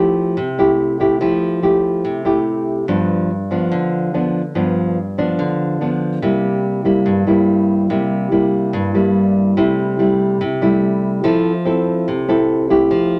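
Bossa nova, relaxed and breezy, played by a lone nylon-string guitar that sits up front with a warm, thumb-plucked classical tone. Its 13-second passage moves through Fmaj9, G7, C7 and Am7/C before settling on Fmaj7. A moderate club reverb gives the cut-out fragment a gentle sense of room.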